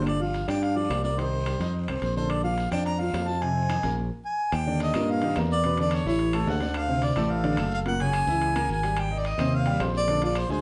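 A straight 4/4 pulse at 216 BPM drives this danceable, sophisticated Afro-Cuban jazz in Bb major, cut from a longer piece. Ringing metal-shell timbales and a raspy guiro sit in the background, joined by very quiet, woody, saturated claves, while a bright, growly fingered electric bass punches up front. A warm, close-miked harmonica carries the solo melody up front, with light vibrato, scooped notes and a slapback echo, over a concert grand piano that adds deep bass and a natural tone. The band halts briefly at 4.0 s before a new section opens at 4.5 s, and the harmony moves through chords such as Gm7, Fm7, Ebmaj7, Gb9 and Abmaj7 before landing on Bb7. A wet studio reverb places the group further back in the room, and the top end is softened.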